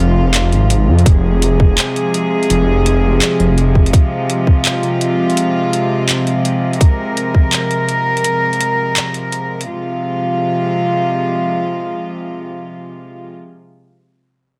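Light reverb and a digital ambience frame this cinematic, heavy half-time drum and bass piece in F minor at 167 BPM, with a swung 16th-note feel. A rich symphonic cello section holds sustained, floating bowed chords throughout, colored by vintage 12-bit sampler grit and sidechain pumping, while a deep, rumbling, saturated detuned saw bass sits underneath until 3.9 seconds and a barely audible downlifter sounds at the start. A tight, up-front electronic kick cuts through, and a layered drum kit with handclaps and metallic hats plays from 0.3 to 9.7 seconds with a small-room character.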